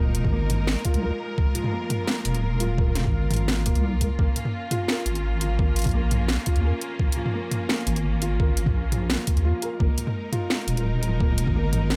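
A digital ambience surrounds this dark, cinematic half-time drum and bass excerpt, where a deep, soft wobble bass with chorus sits up front beside a gritty, thumpy, pitched-down electronic kick. A layered, overdriven electronic drum kit adds a cracking snare, bright hats and toms, while a felt-muted upright piano plays mellow, boxy arpeggios with audible action noise, dub echo and vintage 12-bit sampler grit. Behind them, a distant, lush bowed string section holds sustained chords with vibrato, pumping to the sidechain and carrying the same sampler grit.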